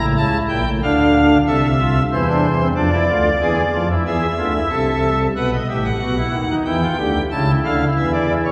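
Classical baroque-style three-part fugue in 3/4, joyful and elegant, played by a solo pipe organ on a nasal cornet stop with romantic voicing and tremulant, sitting up front and spanning A1 to A5. The passage shifts at 5.4 seconds into a new section that moves through B7 and Em before settling on A/C#. A long, wet church reverb blends with a small room ambience, and the 8.5-second passage is cut from a longer piece.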